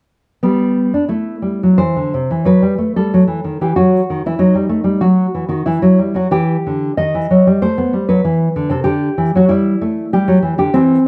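A dark, full-bodied nylon-string guitar plays alone and up front from 0.4 to 11.1 seconds, its thumb-plucked tone and audible finger squeak carrying a grave, flowing baroque-style classical dance in a rubato 4/4 that moves through diminished and half-diminished harmonies before settling back home, all captured in a dry, close 1970s-style studio sound cut from a longer piece.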